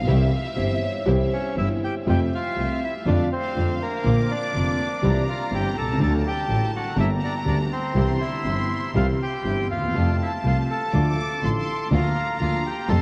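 Rubato and gently pulled in four, this playful, nostalgic tango fragment drifts through a dreamy mix soaked in a huge ambient reverb with a cassette-tape haze. A dark, intimate concert grand piano carries the accompaniment with deep bass and audible action noise, joined by a distant, earthy bowed double bass from a lone player with light vibrato. Above them a studio violin section bows a biting, intense second line with a smooth top, while a lush string section adds very quiet stabs from the outset. A metallic, ringing vibraphone with medium mallets and slow motor vibrato sits dry in the background, appearing briefly between 0.6 and 2.0 seconds. At 1.3 seconds a reedy, bright bandoneon takes the melody up front, its mid-forward tone trailed by tape echo as the harmony moves from F through D minor and B-flat toward G minor and back.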